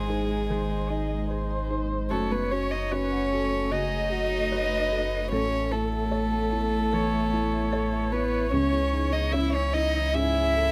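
A single violin carries the melody up front, its tone airy and floating, played sul tasto with a soft attack over a slow, rubato 75 BPM pulse in C# minor. This reflective, longing neoclassical excerpt for piano and strings sets one cello beneath it on a second line, intimate and close with light vibrato, while a lone viola adds a nasal, woody accompaniment. A felt-muted upright piano sits in the background, mellow and hushed, with its action noise audible, and a marimba with medium hard mallets enters at 0.1 seconds with dark, smooth arpeggios on padauk bars. Underneath, a pure sine sub bass holds a deep, clean foundation, and a very quiet ambient pad shimmers with detuned, granular, ethereal sustained chords. The harmony moves from G# through F#m and Aadd9 to C#madd9, captured with close, detailed microphones and light reverb.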